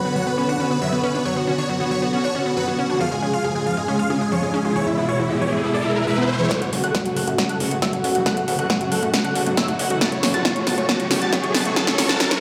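Uplifting trance at 137 BPM in F# minor, this emotional, soaring cut opens with a huge, euphoric supersaw lead carrying the melody through phaser, delay and a low-pass filter, over bowed studio strings with vibrato and a lush, detuned unison pluck spinning arpeggios, all three pumping to the sidechain as the chords move from Bmadd9 through C# and E. A background riser enters at 3.7 seconds, and at 6.5 seconds the build-up arrives on F#m with a catchy, plucky second lead up high, a punchy layered kick, an up-front kit with metallic hats and a drum fill, and filter sweeps across the synths, joined moments later by a gritty, distorted bass sitting very quietly underneath. The mix carries a moderate, lush hall reverb and has the air of a big sound system in a bare room.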